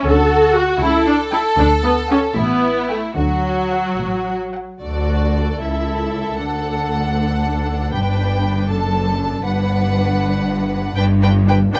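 The viola section stands out most, playing a rich, expressive accompaniment with portamento that sits up front in the blend. This is a quick, lively and graceful classical-period movement for string orchestra in D major, taken from a longer piece, moving in 6/8 at 78 BPM in dotted quarters with a rubato feel. A violin section carries a smooth, even second line from the start, and cellos add a focused, lush bass beside double basses that also slide with portamento; every section is bowed with vibrato. The melody violins enter at 0.6 s, high and close, with a lush sheen. The opening alternates between D and A chords, and at 4.8 s a new section turns toward G and a closing Gmaj7 under light reverb.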